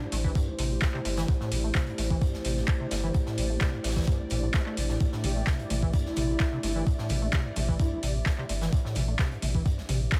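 This trippy, gritty acid house excerpt opens at 0.0 seconds on a dark analog pad holding a sustained Am7 chord, a squelchy square-wave acid bass riff and a brief breathy, flute-like synth lead. The pad is moody and nasal with chorus and sidechain pumping, while the resonant, hollow acid bass carries tube saturation, lush chorus and digital delay. Underneath, a deep, round sine sub bass sits up front and pumps with the sidechain. An overdriven, thumpy electronic kick drives the straight 4/4 at 129 BPM in A minor, joined by an electro analog drum machine with metallic hats, handclaps and toms, plus an oversized low-tuned acoustic kit whose fat snare and hi-hat stay filtered and saturated in the background. A cloudy, evolving granular pad with built-in reverb drifts behind everything as a blurred texture, and the soft flute-like lead returns from 5.2 to 8.0 seconds with vibrato, chorus and delay over a digital ambience.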